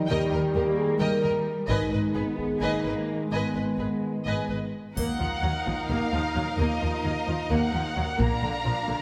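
In a straight 7/8, this dramatic, relentless cinematic orchestral excerpt opens with bright trombones and mellow French horns holding sustained chords over a cello bass line in the background. Above them, a distant violin section carries the expressive melody over a lush second violin line, close, rich violas and double basses tinged with portamento. Taiko drums played with hard sticks in a live room join at 1.7 s, the trombones drop out at 4.7 s, and a dry triangle rings briefly at 5.0 s, the whole set in a wet scoring-stage reverb.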